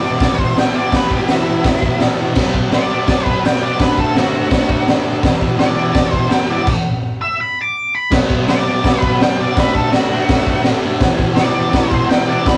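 This rough rehearsal-room recording sits in a small room with moderate reverb, and the drums have the brightness of a stone room. It is a raw, swaggering garage rock piece cut from a longer work, driving along at 167 BPM in a straight 4/4. A thick, double-tracked fuzz guitar plays the low riff, and a dark octave-fuzz lead guitar carries the melody above it, both picked and distorted. The up-front drum kit comes in at 0.2 seconds with a punchy kick, a high-tuned snare, gritty hi-hat and crash, and a rolled-off top. The harmony cycles through E5, B5 and D. A stop from 6.7 seconds breaks the momentum before the same section returns at 8.1 seconds.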